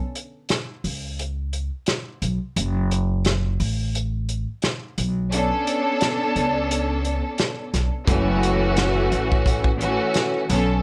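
A light reverb frames this gritty, tough boom-bap hip-hop excerpt, cut from a longer piece and built on a swung 4/4 groove. A soul drum kit enters at 0.2 seconds with a distant, roomy booth sound and a rolled-off top: a tight kick, a medium-tuned snare, rim clicks and hi-hat, all roughened by vintage 12-bit grit. At 0.8 seconds a pizzicato upright bass joins up front, its gut strings giving a woody, thumpy, dark low end. Midway through the opening break, a bowed studio string section arrives at 5.3 seconds, lush and even with vibrato, softened by cassette tape and high- and low-pass filtering. Over a move from F#m to Bm9 and on to F#m7, the strings' smooth sheen sits against the dusty, tough rhythm section.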